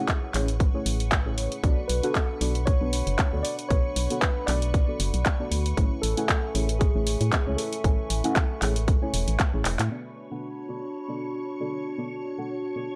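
Late-night and deep, this deep house passage in 4/4 carries a lightly swung sixteenth-note feel as it moves between Amaj7 and Bm7 harmony. A warbling, nostalgic pad with detuned, lo-fi character holds sustained chords under chorus and its own reverb, pumping against the kick, while a soft, dark chord stab with a sub octave sits beside it, coloured by chorus, phaser and tape echo. High above, a silky vintage string machine adds a faint texture through phaser and ensemble chorus. An up-front, punchy kick drives the groove with an analog drum machine supplying handclaps and low-passed hi-hats, and a hollow, organ-like FM bass with a fast, decaying attack pumps in the low register. From 1.9 s a mellow, clean tine electric piano carries the melody, roughened by 12-bit sampler grit and tape echo, until the drums deliver a fill at 9.7 s and drop away, leaving the pads, stab and strings to open the closing section on Bm7 in this dry, gritty hardware recording cut from a longer piece.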